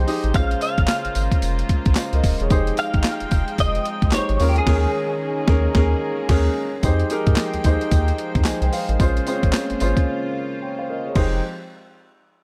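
Opening at once on a clean, picked electric guitar melody coated in ensemble chorus and tape echo, over a concert grand piano, a floating, bowed string section and a round, deep analog bass, this confident, bouncy new jack swing excerpt brings in a gritty, pitched-down sampler-style drum kit with a thumpy kick, high-tuned snare, handclaps, tambourine, hi-hat and crash, hits a band accent and silent gap ending at 6.8 seconds after the guitar has finished, then rides its swung groove to a break at 10.1 seconds in a lightly reverberant room.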